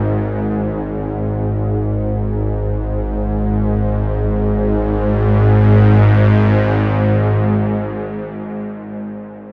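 Cavernous and ominous, this free-time ambient fragment, cut from a longer piece and tuned to A4 = 443 Hz, is carried by a lone bowed-like drone from 0.0 to 8.8 s, spanning G#1 to G#2 with a tense, string-like sawtooth tone thickened by unison layering, a noise layer and vibrato, its slow attack and long release sitting bright and up front in huge reverb with a 7.9 s tail and dark production, while a second section begins at 4.2 s.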